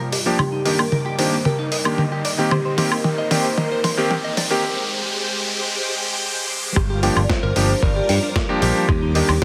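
A soft, round synth lead carries the melody in the background from the opening moment, its dark triangle-and-sine tone thickened by a sub octave, detuning, chorus, phaser and a touch of vintage sampler grit. Beneath it, a lush string machine holds sustained chords with a slow attack and long release, while a clean, scooped electric guitar picks a riff through a low-pass filter and dub echo. This sensual nu-disco excerpt builds steadily as filter sweeps move across the guitar and strings, an electronic riser climbs from 1.1 seconds, and a dusty, gritty sampler-style kit plays a fill across the snare, toms, hi-hat and woodblock. A vintage electric grand piano adds accompaniment with clangy lows and long sustain, pumping with sidechain compression through its own low-pass filter and dub echo. At the drop at 6.8 seconds, a thumpy overdriven kick and a bright, growly picked bass arrive up front to lock the groove onto the new chord, all set in a moderate plate reverb with a heavily compressed, radio-like sound.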